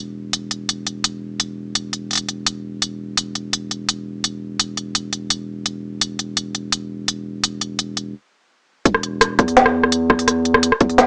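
A deep, thick, saturated sine sub bass anchors this dark, heavy half-time drum and bass excerpt, joined at 0.3 s by an up-front electronic kit of woody snare, rim click and crisp hats with cassette-tape colouring, before a stop at 8.1 s gives way to a drop at 8.9 s where a hard-clipped, overdriven electronic kick punches in, the mix sitting in a moderate reverb with a lo-fi, small-speaker home-cassette character.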